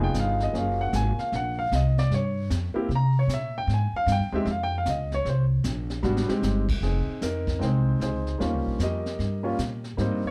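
Moody and cool, this brief excerpt from a longer jazz piano trio piece swings at 152 BPM in 4/4, set in F minor. A grand piano carries the melody with an intimate, up-front sound, its action noise audible, and it takes a solo through the first 6.8 seconds over harmony moving through Db7, Gbmaj7 and Fm7. Upright bass, plucked on gut strings, gives a woody, thumpy foundation that sits close and present. A brushed kit enters at 0.1 seconds with dark cymbals, a high-tuned snare and a boomy kick, adding a fill around 6.0 seconds before the music shifts into a new section at 6.8 seconds, where an Eb7 chord arrives at 8.4 seconds. A moderate club reverb and a dark production give the trio the feel of a small, dim room.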